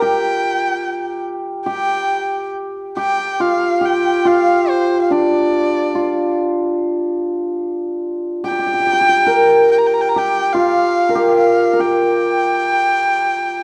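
The recording has a dark, warm production set on a moderate scoring stage, with a reverb tail of about 1.7 seconds that lends a gentle halo to the sound. This is a tender, graceful passage of Chinese traditional chamber music in the G yu mode, moving in a rubato 4/4 around 70 BPM, and it is drawn from a longer piece. A single erhu carries the melody up front, its intimate, close tone shaped by a soft attack, light vibrato, portamento and an airy bow. Beside it, also up front, a hammered dulcimer plays a second line in a lower register, its acoustic strings shimmering and ringing under the bowed voice. Both instruments sound together from the opening through to 13.6 seconds, with a brief opening phrase giving way at 1.7 seconds to a longer, unfolding section.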